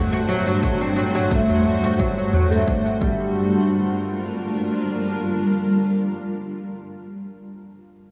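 Meditative and warm, this short organic downtempo excerpt in a lightly swung 4/4 drifts on a blurred, detuned granular cloud pad with lush chorus and sidechain pumping, while a woody, plectrum-plucked fretless oud traces arpeggios up front through tape echo until 3.7 seconds, a filter sweep shaping it through 3.4 seconds. It is joined briefly by a faint electronic shaker, a punchy overdriven electronic kick and a high-tuned, ringing tabla in the background, all set in a dreamy hall-soaked mix as the harmony moves from D7/G to Gm7 at 3.0 seconds and the pad sustains alone to 6.2 seconds.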